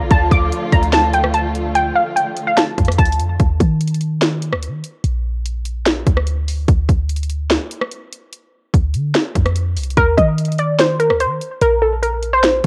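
Menacing and melancholic, this half-time trap excerpt opens with a warbling, lo-fi detuned pluck melody over dark, lush bowed strings, a deep, boomy sine 808 bass and an overdriven kit of hard-clipped kick, sharp snare and bright hats, then drops the pluck and strings for a break from 3.4 to 10.0 seconds before the pluck's return over Cm7, all bathed in cassette-dusted digital ambience.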